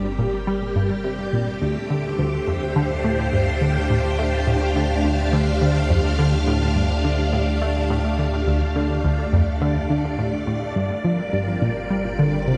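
Expansive and hypnotic, this excerpt of sequencer-driven ambient space music moves at 105 BPM in a straight 4/4, cut from a longer piece and shifting from G minor to D minor before returning to G minor at 10.8 seconds. A tight, driving sequenced synth riff with a detuned, plucky filter edge, dressed in chorus, phaser and tape echo, runs beneath lush, bright string-machine chords that sit up front with phaser and ensemble chorus, while a deep, round sine sub bass anchors the low end throughout. The whole is bathed in a cathedral-like reverb that opens into a vast, echoing space, with the grain of cassette tape.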